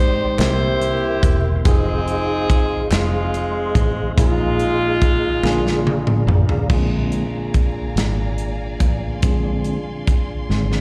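In a straight 6/8 at 48 BPM, this soulful, reverent slow gospel piece opens with a clear, up-front saxophone section carrying the melody through slapback echo until 6.3 s. Beneath it sit a tine electric piano with its own slapback echo, a flute-like tonewheel organ with key click and fast rotary speaker, and a bright, punchy fingered bass. A punchy acoustic drum kit with bright cymbals and very quiet crisp handclaps enter at 0.4 s, and the kit rolls through fills as the chords move from C7 to Fm7, Bb7sus4 and Bb7. At 6.7 s the organ takes a solo as a rich bowed string section joins softly, the whole band sounding like a live gig heard through a venue's PA in a recital-hall reverb.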